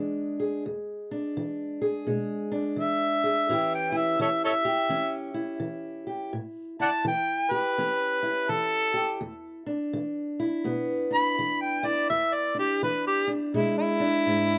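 Close, detailed microphones in a small booth give this gritty, rollicking slice of acoustic country blues an intimate, present sound with a swung, loping feel. A boxy, parlour-style fingerpicked steel-string guitar lays down the accompaniment from the start, and at 2.8 s a warm harmonica, bathed in plate reverb and sitting slightly louder, enters with the melody, playing a jazzy solo with light vibrato, tongue slaps and scooped notes. Both instruments stay up front as the harmony moves from E7 to A7 and back to E7 at 9.2 s.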